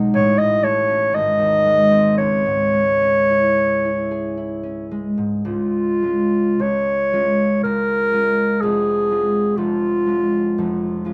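In a slow, rubato 3/4 that drifts between 50 and 64 BPM, this elegiac romantic duo for clarinet and concert harp opens in C# minor and moves to Db major at 5.5 seconds. The mellow, distant clarinet carries the solemn melody up front in a roomy, classical style, while the fingerpicked harp rings out its low-reaching accompaniment close beside it. A light reverb surrounds this brief fragment of a longer piece, which closes on a Db chord over F at 8.6 seconds.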